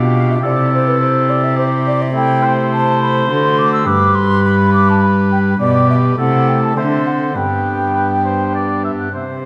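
A baroque-style classical sonata movement with continuo in G major, this serene, dance-like excerpt moves in a straight 3/4 at 104 BPM. A mellow, airy baroque flute carries the melody from 0.2 seconds with vibrato and tongued, expressive phrasing, set distant beside a soft-attacked oboe on the second line. Beneath them, a thick pipe organ on foundation stops and a rich, gut-string cello bowed by one player sit up front, all bathed in a recital hall reverb.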